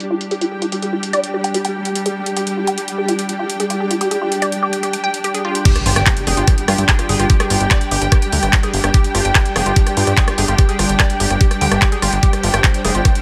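A straight 4/4 pulse drives this intense, psychedelic trance excerpt, opening with a techno drum kit of handclaps, rim clicks, crash and low-pass-filtered metallic hats, under a pulsing gated synth texture holding sustained chords. A dark, lush bowed string section sounds from the very start, a woody, wave-folded pluck riff with chorus, delay and gritty 12-bit sampler character enters almost at once, and the texture, strings and pluck all pump with the sidechain. The drop lands at 5.7 seconds with a knocking, up-front electronic kick and a very quiet electronic impact, followed at 5.9 seconds by a fat, nasal, saturated analog bass, all set in a light reverb.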